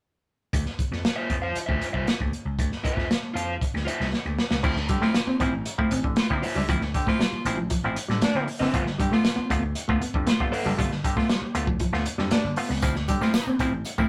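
A straight 4/4 funk groove at 117 BPM opens this sly, cool clip in D dorian, with a crunchy breakbeat kit and a growly, bright vintage slap bass starting together at 0.5 seconds. The drums sit up front with a tight kick, medium-tuned snare, dark cymbals and a gritty, saturated edge, working kick, snare, hi-hat and crash. At 1.2 seconds a raw garage guitar joins high in its range with an overdriven, picked accompaniment, and a drum fill leads into a fuller second section at 4.6 seconds. There an overdriven clav adds stringy, percussive stabs through an auto-wah, a mellow, dark electric guitar plays a clean fingered riff, and a clear, distant baritone saxophone carries a roomy second line. The harmony moves from Dm9 to G9 and back to Dm9, and a jingly tambourine slips in faintly near the close. Light reverb and a rough rehearsal-room sound give the whole excerpt a loose, lived-in feel.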